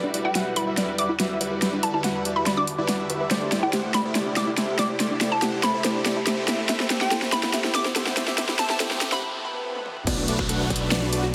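A dense, heavily limited modern mix sits in a huge ambient reverb, giving this lush, dreamy future bass excerpt a half-time feel. Up front, detuned supersaw chords carry the riff through a sweeping low-pass filter, chorus, delay and sidechain pumping, while an ethereal pad with a slow attack hovers in the background over Em9, D9sus4 and Am7. A very quiet unison pluck spins arpeggios, and a hollow, bouncy square-wave pluck sings the high melody with chorus and delay. An overdriven big-room drum kit with a huge snare, crash, hi-hat and toms drives the build-up with fills, as risers and swells rise in the background toward a break at 9.2 seconds. At 10.1 seconds the drop lands on Bm7, where a fat sawtooth bass and a punchy, overdriven electronic kick arrive.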